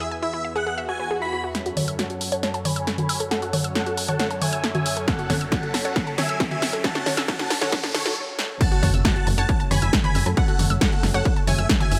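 This short excerpt from a longer uplifting trance piece has a light reverb, and every melodic part pumps against the sidechain, while the drums sit punchy and overdriven up front in a small room. At 136 BPM in F# minor, it opens on an Eadd9 chord with a huge, euphoric supersaw lead carrying the melody, a thick, nasal pad holding sustained chords with chorus, and a detuned pluck spinning arpeggios through cassette-tape grit and delay. The lead itself carries vintage 12-bit sampler crunch, a low-pass filter and delay, and background sound effects swell in at 0.8 seconds. From 1.5 seconds, as the harmony moves to F#m, a build-up begins: the techno kit enters with crash, hi-hat, a punchy snare and toms in a long drum fill, a riser climbs, and filter sweeps open the supersaw and the arpeggio. The layered, heavy electronic kick joins at 5.1 seconds, and after a brief break the drop lands at 8.6 seconds with an impact and a second pluck line in the background, followed at 8.8 seconds by a tight, driving sequencer bass that gives the emotional, soaring climax its weight.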